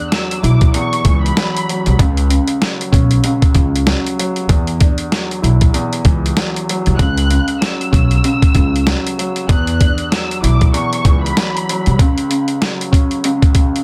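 Dense, heavily limited and lightly reverberant, this reflective, gritty boom-bap hip-hop excerpt at 96 BPM in C# minor swings over a compressed, pitched-down sampler-style drum kit with a thumpy kick and medium-tuned snare, while a dark, mellow, slightly detuned upright piano sits up front voicing Esus2, C#sus4 and C#m chords, a woody pizzicato upright bass with bright steel strings enters at 0.4 seconds, and a rich, bowed violin section with expressive vibrato, plate reverb and delay carries the melody in brief phrases at the start and again from 7.0 to 11.9 seconds.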